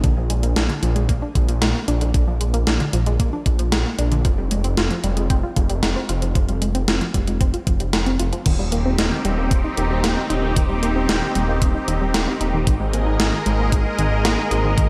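A thick, detuned saw bass with chorus sits up front in this nocturnal, nostalgic synthwave excerpt, joined throughout by a thumpy electronic kick and a gated 80s digital drum machine whose snare, hi-hat and crash carry gated reverb and slapback echo. A punchy unison pluck spins arpeggios through a filter sweep, tape echo and shimmer reverb, and at 8.5 seconds a bright, lush unison pad enters with slow-attack sustained chords treated with chorus, phaser and sidechain pumping. The harmony moves from Bb7 and Fm to Eb6 and Absus2, set in a big, arena-sized hall.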